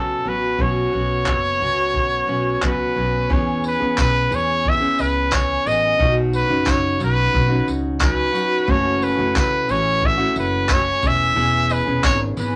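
A relaxed, straight 4/4 pulse at 89 BPM carries this carefree, easy-going acoustic pop piece in E major, cut from a longer piece. A bright, punchy trumpet sits up front with the melody, singing with vibrato and scooped notes in a pop style. Beneath it, a picked steel-string acoustic guitar supplies accompaniment with audible finger squeak, while a woody pizzicato upright bass anchors the low end. A vintage brush drum kit, distant and roomy with a punchy kick and rolled-off top, enters at 0.6 seconds with handclaps and tambourine in the mix, and a jingly tambourine joins far in the background from 4.0 seconds. Light reverb frames the whole, and the harmony moves through colorful chords such as Bsus2, E6, Badd9, F#m7 and C#m7/E.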